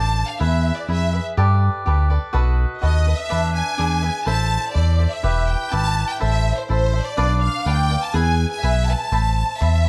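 A clear, up-front studio violin section carries a passionate, vibrato-rich melody in A minor from the first moment, over crisp picked cavaquinho and a dark, smooth sawtooth synth bass that glides with portamento, giving this dramatic mariachi excerpt at 124 BPM in 2/4 a harmonic path from E through Gadd9 and B7 to Am, Em and Bdim before landing on Amadd9, all captured through close, detailed microphones with light reverb.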